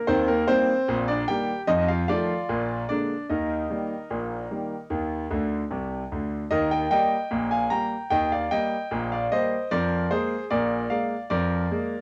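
Playful and cheerful, this short ragtime piano passage, cut from a longer piece, moves at 75 BPM in a straight 2/4 in E-flat major, with a clear, up-front concert grand playing alone from Bb1 to Bb5, its smooth, vintage tone and deep bass colored by cassette tape and a wet booth ambience, as it walks through Eb, F7 and Bb7 harmonies, adds a fill from 5.3 to 6.5 seconds, and shifts into a new section at 6.5 seconds that returns to Bb7 at 9.7 seconds.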